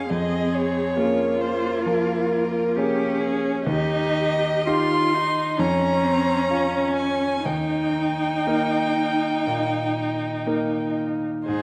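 From the first moment a warm, expressive violin sings the melody up front with vibrato and portamento over a brilliant grand piano, a focused viola and a smooth, distant cello second line, together forming a serene, lyrical slow romantic movement for piano quartet at 56-69 BPM in 4/4 with rubato, moving through Bbm7/F, Eb and Db/F harmonies in a reverberant recital hall, in a short fragment cut from a longer piece.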